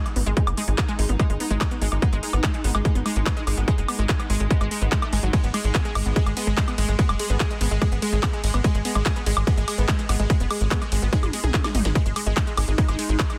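A heavy, up-front electronic kick and a tight, punchy sawtooth sequencer bass drive this intense psychedelic trance excerpt at 145 BPM in G# minor, with the bass's filter pluck and moving notch giving it a mellow bite. A lush, warbling unison pluck riff with dub echo and sidechain pumping rides over a tape-warm techno kit of cracking snare, smooth hats, ride, handclaps, toms and woodblock, which plays a fill from 11.1 to 12.0 seconds. Behind them, a pulsing, detuned gated texture holds sustained chords with chorus and its own reverb, all inside a dense, heavily limited master.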